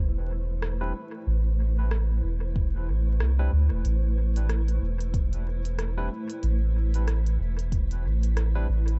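Ambient dub in a hazy, meditative mood, this excerpt, cut from a longer piece, rests on a blurred, granular cloud pad holding a sustained Amadd9 chord alongside a round, soft sub bass sitting up front with tube saturation, both present from the start. An organic electronic drum kit of crisp hi-hats and rim clicks enters at 0.6 seconds through dub echo, followed by barky tine electric piano stabs, filtered and echoed through a combo amp, and a deep, layered electronic kick arrives at 2.6 seconds. The echo-heavy mix is dusted with vinyl crackle and rolled off in the highs, giving it a dim, smoky cast.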